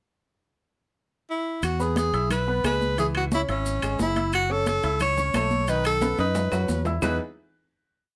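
With light reverb, this short, joyful and festive salsa piece opens with a breathy tenor saxophone pickup at 1.3 seconds, its scooped, vibrato-laden hook phrases up front over a round, fingered electric bass tumbao that anticipates the chords, a clear, polished grand piano montuno in octaves with audible action noise, and background congas with slaps and open strokes, ringing metal-shell timbales, woody claves on a two-bar time line and grainy maracas, before a drum fill from 6.0 seconds leads into a final chord.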